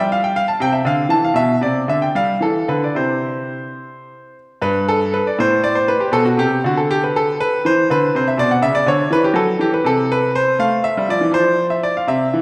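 A bright grand piano opens alone, up front and natural in tone, playing a serene, dance-like baroque-style suite movement in a lilting 6/8 with a freely breathing rubato. The same opening idea is stated twice, the second time from 4.6 seconds, moving through colourful harmonies such as Cadd11, Bmadd11, Cmaj9 and Cmaj7#11 before settling on F near 10.6 seconds. The piano's brilliant sound rings in a reverberant church or concert hall, and this 12.4-second passage is cut from a longer piece.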